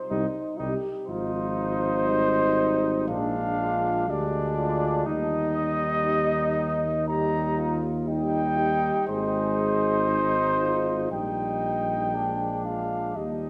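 A dark, up-front trumpet opens this stately, triumphant brass quintet passage in Eb major at a slow 60 BPM, joined at 0.1 seconds by a soft-edged, distant flugelhorn on the second line, a clear French horn and a roomy trombone in the background, and a mellow, smooth-topped tuba up front on the bass, each played with light classical vibrato in a wet recital hall as the harmony moves from C minor through Bb7 to Eb, then on through Ab and back to Bb7 before the fragment breaks off at 13.5 seconds.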